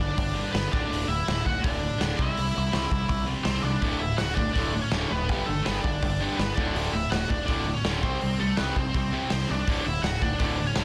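This is a dry, dense and heavily limited modern mix, a short cut from a longer rowdy, energetic punk rock piece in D major at 164 BPM in a straight 4/4. Up front, a cranked stack guitar carries the melody with a bright, overdriven, picked tone and a touch of tape echo, ranging from A3 up to F#5. Behind it, a distorted electric guitar pushes a compressed, picked riff, and at 3.8 s a second distorted guitar joins with another riff in the same low register. A growling picked electric bass, direct and amped with a gritty overdrive, holds down the bottom end from D1 to C2. The raw garage drum kit comes in at 0.2 s with hi-hat, a punchy kick and a medium-tuned snare, sounding dark and smooth with a rolled-off top and the ring of a stone room. The chords cycle through G, D and C, touching a C5 power chord before landing back on D.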